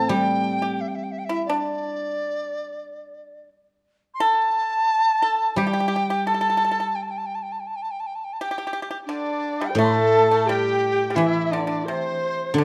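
Chinese traditional chamber music in the G zhi mode, graceful and festive, moves at 87 BPM in 4/4 with a free, rubato feel. This short excerpt is led by a large dizi, bamboo-toned with a buzzing membrane, crisp attack and expressive vibrato. Up front beside it are a dry, percussive pipa on a second line and a ringing, silvery guzheng in accompaniment, both played with fingerpicks. At 9.1 s a single bowed erhu enters with a dark, woody second line full of vibrato and portamento, all set in a moderate recital-hall reverb with a dark, warm production.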